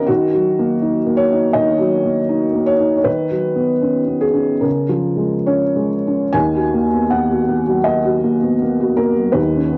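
Reflective and wistful, this short cut from a longer neoclassical minimalist piece features a felt-muted upright piano alone in Eb minor, tuned to A4 = 444 Hz, moving rubato in 4/4 at 67-82 BPM across a range from Eb2 to Ab5, its soft, dark, boxy and intimate tone set up front in a small room with light reverb on a home cassette recording, passing through Ebm, Badd9/D# and Db6 before a new section returns to Ebm at 6.3 s.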